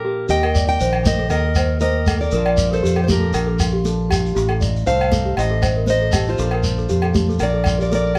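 Joyful and danceable, this short highlife guitar band excerpt moves at 118 BPM in 4/4 with a lilting swing on the sixteenths. A fingerpicked, plugged-in steel-string acoustic guitar carries the melody up front with a full-bodied jumbo tone. Beneath it, a clean electric guitar picks an accompaniment in the background, and a celesta adds delicate, bell-like arpeggios. These three open alone before a round, dark fingered electric bass, high-tuned congas with a thick-skinned sound and a grainy shekere join at 0.3 s, with ringing agogo bells following at 0.4 s. The harmony moves through Eb, Bb and F7/A before returning to Bb, and the band plays live together in one room with a moderate studio reverb.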